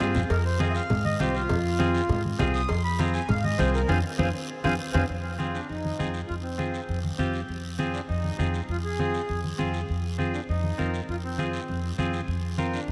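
A dreamy, reverb-soaked hall sound frames this driving, danceable cumbia in F minor at 200 BPM, where a reedy, slowly beating accordion carries the melody through a diffuse ambient delay and solos until 5.1 seconds, over up-front woody pizzicato upright bass, a bright, clean picked semi-hollow electric guitar, raspy dry guiro, thin-skinned low-tuned congas in the background, and very quiet ringing, saturated cowbell and timbales that drop out at 5.0 seconds during a band accent.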